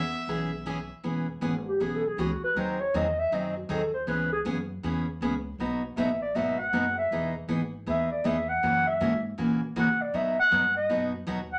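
Set in a studio room with a noticeably wet reverb, this cheerful, playful western swing passage is cut from a longer piece and moves with a swung lilt. A clear, boxy fiddle sounds a single bowed melody note up front with light vibrato, stopping at 0.9 seconds. From 1.0 seconds the breathy clarinet takes a jazz-style solo, its dark subtone, soft attack and scooped notes giving it an intimate, whispered quality despite a somewhat distant, roomy placement. Underneath, a full-bodied dreadnought acoustic guitar is picked as accompaniment. A woody pizzicato upright bass sits low in the mix. The harmony moves through sweet sixth and seventh chords such as E6, C#m7, Emaj7 and F#7 before settling on B at the close.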